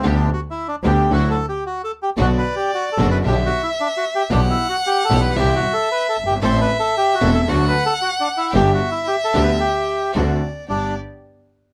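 Playful yet passionate, this brief tango excerpt moves with a rubato feel in 4/4, its harmony resting on a G major home and closing on a D7 that resolves back to G. A reedy, dark bandoneon carries the melody up front, its tone framed by a boxy small-room character, while a concert grand piano with deep bass and a natural sound supplies the accompaniment beneath it. A clear, earthy double bass, bowed by one player with light vibrato, anchors the low end, sitting up front yet sounding distant. A rich symphonic string section adds focused, lush stabs with vibrato. At 2.2 seconds a warm violin enters with a second line, bowed by one player close to the microphone, shaping its notes with a soft attack, vibrato and expressive portamento. Light reverb and close, detailed microphones give the ensemble an intimate presence before the passage cuts off just as a new section begins at 10.7 seconds.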